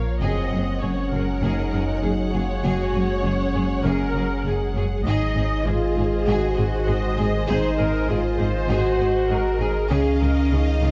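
A relentless, brooding hybrid orchestral and electronic film score excerpt at 99 BPM in 4/4, where a lush violin section carries the focused, vibrato-rich melody over a second, softer-edged violin line and an even viola accompaniment. A mellow, warbling analog drone with chorus sustains chords in the background, while a clean, up-front sine sub bass anchors the low end from the start, joined by the cello and double bass sections at 0.2 seconds. Distant French horns hold chords through a Gbsus2, Ab and Dbadd9 progression, all bathed in dark, wet scoring stage reverb.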